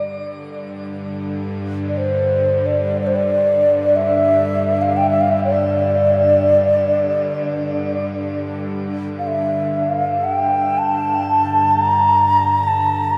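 Haunting and meditative, this brief excerpt of world-inflected meditation music drifts in free time, cut from a longer piece and set in a vast, echoing space with a long cathedral-like reverb. A low xiao carries the melody up front, its bamboo tone pure and warm with a crisp attack and vibrato, trailed by shimmer reverb and tape echo. Beneath it, a bowed-like drone holds low and sustained throughout, its string-like, tense sawtooth timbre roughened by a noise layer and ring modulation, with slow attacks and long releases.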